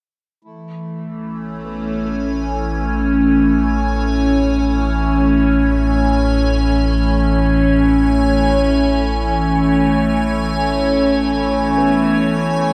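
A straight 4/4 pulse at 74 BPM underlies this serene, weightless ambient passage in A major, cut from a longer piece and resting on a single Amaj7 chord. A reedy, breathing harmonium fades in from 0.4 seconds in the background, joined at 0.7 seconds by an up-front, bright, morphing wavetable pad with phaser, and then by a very quiet felt-muted upright piano playing soft, intimate arpeggios with audible action noise. From 1.8 seconds a deep, ominous, warbling drone rumbles underneath, and the whole is heard in a vast, echoing space with a huge reverb and a cassette-tape character.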